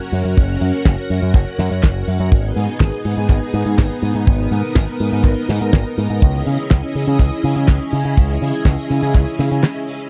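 Italo disco at 123 BPM in G# minor, melodramatic and danceable, with a tight, up-front acoustic kick under a damped 70s drum kit of fat snare, hi-hat and handclaps, a bright picked electric bass pushed through an envelope filter, and a lush, vintage string machine holding slow-attack sustained chords with ensemble chorus over F#, G#m and C#madd9, all in a dry, close 1970s-style studio sound, with a brief break at 9.6 seconds as the bass drops out.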